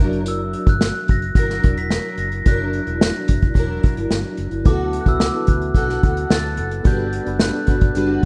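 A rough home-demo sound with small-room ambience frames this hazy, laid-back indie and bedroom pop excerpt at 109 BPM, where up-front, airy drums played with bundle sticks and carrying a gritty 12-bit sampler texture sit alongside a dark, foam-muted fingered bass, a picked steel-string acoustic guitar with finger squeaks, ensemble chorus and warbly pitch drift, a bell-like glockenspiel melody struck with rubber mallets under lush chorus, and soft, round electric-piano-like synth keys with tremolo and cassette-tape coloring that enter at 4.6 seconds, over chords moving from F#7b9b13 to D6 and Gmaj7.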